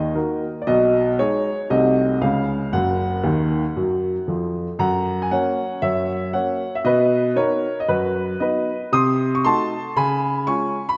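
A clear baby grand piano plays solo through this short, swinging stride-jazz excerpt in F# major at 116 BPM, its open tone and long sustain sitting up front across a span from F#1 to Eb6. The piano carries a fill from 3.2 to 4.8 seconds before the second section begins, moving through chords such as Ebm, Cdim7 and C#7. A lush, wet hall reverb surrounds the exuberant playing in a rough home-demo mix.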